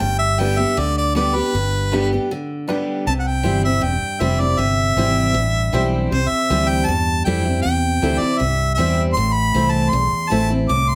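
Honky-tonk and classic country in a heartbroken, dusty mood, this excerpt opens on a clear, up-front harmonica solo with light vibrato over bright, full-bodied picked acoustic guitar with audible finger squeak and a dark, round, punchy foam-muted electric bass. A woody upright piano with short sustain sits in the background from 0.4 seconds, and a break arrives at 2.3 seconds before the harmony moves from G to C at 3.1 seconds and later to Am. A moderate large-studio reverb lends the sound a sense of space.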